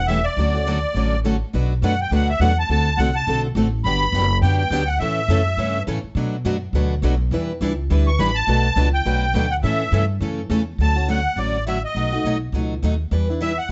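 Opening on a woody, thumpy pizzicato upright bass with a reedy, shimmering musette accordion up front and two picked steel-string acoustic guitars, one bright with finger squeak and one boxy plugged-in parlour guitar that drops out at 10.6 seconds, this playful, charming gypsy-jazz swing excerpt in D major skips along at 207 BPM under light reverb, the accordion pausing between 5.8 and 8.1 seconds as the chords pass through Bm7 and Em7.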